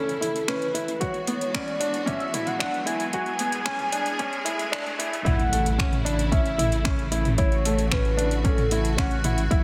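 Tender and hopeful, this piano and strings electronica excerpt moves at 113 BPM in A major, with a velvety, chorused synth lead carrying the melody over a felt-muted upright piano riff with audible action noise and digital delay. Beneath them, a clear, bowed string section holds sustained chords and a round analog bass anchors the low end, both pumping with sidechain. A build-up with a filter sweep and a background riser and swell leads to a drop at 5.3 seconds, marked by an impact, while an overdriven deep house kit of finger snaps, metallic hi-hat and toms enters at 0.1 seconds and a deep, driven electronic kick joins at 1.0 seconds, all set in a moderate concert hall reverb as the chords move from A to Eadd9/G# and back to A.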